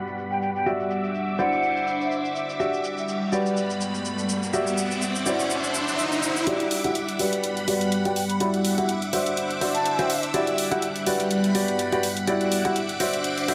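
Soulful and bittersweet, this piano house excerpt moves at 124 BPM with a light 16th-note swing, cycling through Gmaj7, D9 and Em9 chords as an intimate baby grand riff with audible action noise sits up front, colored by a low-pass filter and dub echo, over shimmering string-machine violins and a deep, warbling detuned pad. Overdriven electronic shaker and bright hi-hats enter at 0.1 s, while a mellow, hollow jazz flute plays short melodic phrases, and an electronic riser leads into the second section at 6.5 s. From there a build-up takes hold as filter sweeps move across the piano and flute, all set in a lush hall reverb.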